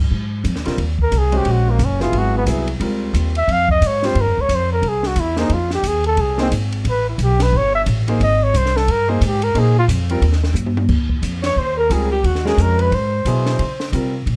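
Swinging and playful, this short excerpt of small-group jazz opens with a woody, thumpy upright bass up front, soon joined by an open studio drum kit with a high-tuned snare and boomy kick, a natural-sounding grand piano comping, and a dark, breathy trumpet soloing with light vibrato and plate reverb until a drum fill at 10.6 seconds leads into a new section where a clear, soft-attacked alto saxophone adds a subtoned second line in the background from 11.4 seconds.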